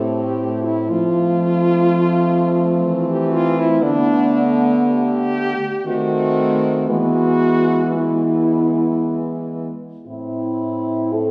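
Melancholic and solemn, this short cut from a longer classical piece for horn quartet moves in a rubato 3/4 at about 55-63 BPM in A minor, with the chords passing from Am through Fmaj7, Gadd9/D, D#dim7 and E before settling back on Am at 10.1 seconds. A French horn with light vibrato and a smooth top carries the melody up front, while a mellow, distant horn sings the second line, a third horn holds the accompaniment in the background, and a soft-attacked bass horn with its own gentle vibrato anchors the low end. All four play throughout, bathed in the wet reverb of a church or concert hall.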